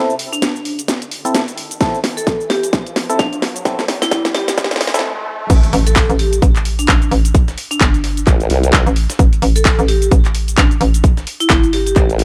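Bass house with an aggressive, bouncy swing, this short cut builds from chorused, phased organ stabs under a filter sweep, metallic hard-mallet vibraphone ringing through digital delay, a cracking house kit with handclaps and shaker, a punchy electronic kick and a background riser, then drops at 5.5 seconds on an impact into a hollow, knocking FM bass, a very quiet gritty sampler-style kit and brief saturated wobble-bass bursts at 8.3 and 12.0 seconds, all in a dry mix.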